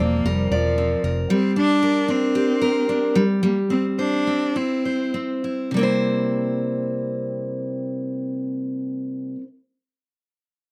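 Sunny and carefree, this acoustic pop excerpt moves in 4/4 at around 98-115 BPM with a light swing on the sixteenths, sitting in C mixolydian and slowing down between 1.3 and 5.7 seconds. A rich, bowed cello carries the melody up close, its smooth, even tone touched with vibrato and a slapback echo, until it stops at 5.1 seconds. A picked steel-string acoustic guitar with a full dreadnought body provides the accompaniment until 9.5 seconds, sitting up front and ranging from low to high notes. A vintage muted fingered electric bass adds a dark, round, punchy thump only at the very start, ending at 1.2 seconds. The harmony moves from Bbadd9 through Gm and C/G before landing on C7 as a new section begins at 5.7 seconds, where the guitar is heard alone. The sound is dry and open-air, with little reverb and an intimate, outdoor feel.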